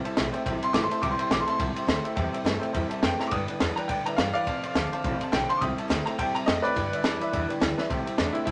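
A light reverb surrounds this rowdy, upbeat rockabilly excerpt, cut from a longer piece, where a clear, slightly detuned upright piano with long sustain carries the melody as a solo from 0.6 seconds, over a compact cocktail kit that sounds dark and up front with a high-tuned snare, tight kick and ride cymbal, adding fills at 3.2 and 7.8 seconds. Swung eighths drive the groove as a woody, thumpy pizzicato upright bass with gut strings anchors the low end and an electric guitar through a small old amp plays a twangy, slightly broken-up low riff. A jangly, metallic tack piano and a full-bodied picked steel-string acoustic guitar, sitting in the background, fill out the accompaniment over chords moving through C6, G6 and F6.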